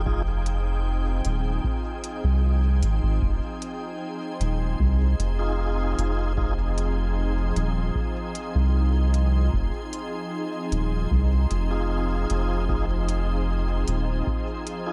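A hazy, spacious ambient dub fragment opens on a bright, pure organ-like pad holding sustained chords from an opening Fm7 with chorus and reverb, over a round, deep sub bass up front, while lightly overdriven tonewheel organ stabs with key click, fast rotary speaker and dub echo return at 5.4 and 11.7 seconds, a deep, tape-coloured electronic kick sits in the background and smooth electronic hi-hats tick beneath it all in an echo-heavy mix.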